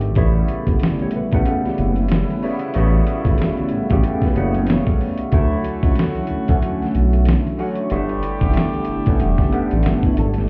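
A gritty, overdriven sampler-style drum kit with a thumpy kick and fat snare sits up front in this relaxed, sensual neo-soul R&B excerpt at 93 BPM with a swung 16th feel, joined by a smooth, nasal, detuned synth bass and a barky tine electric piano through a phaser, both also up front. A small, thumb-plucked nylon-string guitar sits in the background from 1.0 to 5.3 seconds and returns briefly at 10.1 seconds, and a warm jazz-style horn section adds stabs from 1.5 seconds over A9, Dmaj9 and G69 chords. The mix sounds muffled, as if heard through a wall in a club's reverb.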